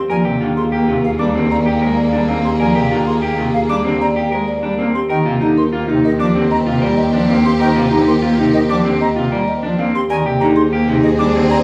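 Set in a moderate large-studio reverb, this bright, propulsive excerpt of minimalist classical pattern music moves at 96 BPM in Eb major, with a woody, round soft-mallet marimba melody over thick, romantic pipe organ foundations, lush bowed violin-section chords, airy silver flute arpeggios and dark, slightly broken-up picked electric guitar arpeggios, all anchored by a focused, up-front solo cello bass on Eb, as the harmony shifts from Bb13/Eb to Eb69 at 5.1 seconds and Abmaj9/Eb at 10.1 seconds.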